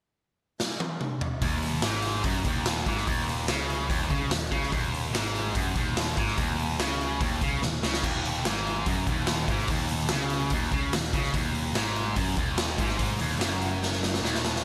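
A bright, 1980s-style digital production with moderate plate reverb and lossy compression artefacts frames this energetic, anthemic hard rock excerpt, cut from a longer piece, at 145 BPM in a straight 4/4. A raw garage drum kit opens with a fill at 0.6 seconds, its gritty, saturated sound set up front with a punchy kick, a medium-tuned snare, toms, hi-hat and crash, all carrying gated reverb and the pumping air of a bright stone room. At 1.4 seconds a sludgy, double-tracked distorted guitar enters with an overdriven, picked riff ranging from Eb2 to Db3 over an Ebmadd11 chord. Entering at the same moment, a growly, amped electric bass, picked and overdriven, sits beneath it between Eb1 and Db2. Further drum fills mark 7.6 and 13.8 seconds as the heavy groove drives on.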